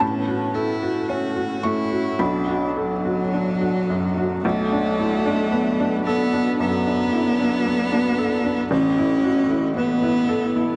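Soaked in plate reverb and softened by the dull, tape-worn haze of a cassette, this fragile, melancholic neoclassical fragment in B minor drifts at a rubato 56 BPM, with a felt-muted upright piano, intimate and up front with audible action noise, carrying the accompaniment beside a rich, vibrato-laden bowed cello singing a focused second line, while an ethereal, airy pad with ensemble chorus sustains slow-blooming chords in the background as the harmony moves from F#m/A to Bm7 at 2.2 seconds and settles on Asus2 at 8.7 seconds.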